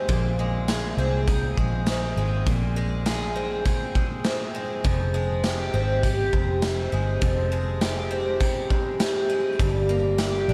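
Dream pop at 101 BPM in 4/4, this short excerpt cut from a longer piece feels melancholic and haunting, moving from Bbsus2 to Fmadd9 and arriving on Gm at 9.6 seconds. A picked twelve-string acoustic guitar plays arpeggios up front, its boxy parlour tone octave-doubled and shimmering through lush chorus and delay. Beneath it, a vintage muted fingered electric bass sits low, dark and round, with an amped, punchy edge. A raw garage drum kit of hi-hat, kick, snare and tambourine comes in at 0.1 seconds, gritty and saturated with a punchy kick, a medium-tuned snare and a rolled-off top, pumping in a bright stone room. The dreamy mix is soaked in a lush hall reverb with a 1.8-second decay.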